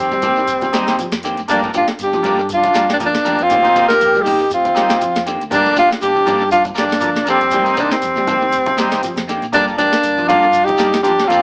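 This funky, driving afrobeat excerpt sounds like a band playing live in one stone room, heard through a small speaker, with a moderate reverb giving the parts some space. Up front, a breathy tenor saxophone carries the melody with a soft attack, vibrato and an intimate, whispered quality, while a clear, distant trombone plays a second line further back. A dark, clean semi-hollow electric guitar supplies stabs, and a second guitar through a small old amp adds slightly broken-up picked arpeggios. An overdriven combo organ with a buzzy, vintage tone joins the accompaniment at 0.7 seconds. Underneath, a round hollow-body bass, grainy shekere, hard-handed congas and a booming analog drum machine with a deep kick, tonal snare and metallic hats drive the swung groove over a repeating F9sus4 to Gm7 vamp.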